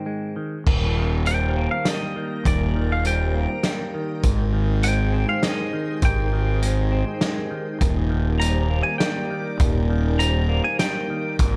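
A dark, clean semi-hollow electric guitar opens this soaring, cinematic post-rock excerpt in 3/4 with delayed arpeggios; at 0.7 seconds a loose indie drum kit with punchy kick and fat snare, an up-front growly fuzz bass and mellow soft-mallet vibraphone arpeggios with delay in the background join it. A twangy, compressed lead guitar with spring reverb and delay takes the melody at 1.3 seconds, and a bright, organ-like pad with ensemble chorus settles in at 2.0 seconds, the whole set inside a studio reverb as the chords move from Ab through Eb to Abmaj7 and Ebmaj7.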